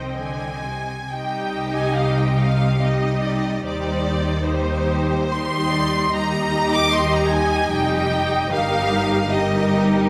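Up front, a lush violin section carries the melody in warm, smooth, vibrato-rich bowing, while a second violin section traces a focused line beneath it in this tender, serene slow romantic movement for string orchestra in C minor. Around them, a rich viola section fills in the accompaniment, a bright cello section sits in the background and a close, expressive chamber double bass section anchors the bass. The 3/4 pulse at about 73 BPM breathes with uneven, rubato beats through a wet concert-hall reverb as the harmony moves from C minor toward E-flat, in a passage cut from a longer piece.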